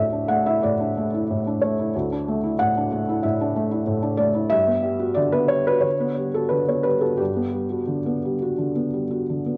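A felt-muted upright piano plays alone through this melancholic, wistful fragment of neoclassical minimalist music, its soft, mellow, intimate tone sitting up front with short sustain and a cassette-tape haze and analog delay, moving from Dsus2 to Gmaj7 at 4.5 seconds in a rubato 4/4, tuned slightly below standard pitch, within light reverb and studio ambience.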